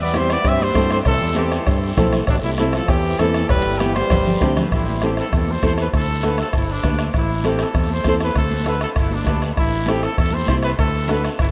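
Drenched in a huge, echoing reverb as if played in a vast hall, this fiery, danceable cumbia fragment sets a distant, punchy trumpet melody with vibrato over a fingerpicked flamenco guitar, a direct fingered electric bass, a soft-beater bombo, ringing high-tuned congas in the background and a raspy, saturated guiro, while a bright, close-miked trombone adds a background second line and very quiet metal-shell cowbell and timbales ring until both drop out around 4.6 seconds, during a drum fill that runs from 3.8 seconds.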